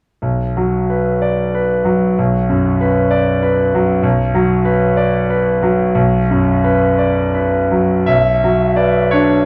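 Bittersweet and stormy, this short excerpt from a longer romantic character piece for solo piano moves in a rubato 6/8 at roughly 52-66 BPM in B minor, opening on a B minor chord. A bright, brilliant concert grand sits up front, its deep bass and long sustain reaching from B1 to E5 as it plays from 0.2 to 9.5 seconds. It is heard in a wet recital hall with a 1.6-second reverb and a dark overall production, and a new section arrives at 8.1 seconds.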